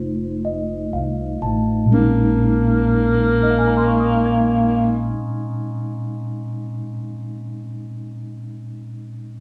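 A breathy tenor saxophone carries the melody from 1.9 s to 5.1 s, its whispered subtone tone marked by vibrato, scooped notes and a soft attack on a single pitch, giving this smoky, intimate jazz ballad fragment its vintage character. Beneath it, a mellow, clean tine electric piano sits up front through the whole passage, moving from an F7 chord in an opening that slows down to a Bbm11, while a woody pizzicato upright bass supports the harmony until 5.1 s. The band plays live together in a small room with moderate studio reverb, and the piano rings on by itself after the saxophone and bass stop.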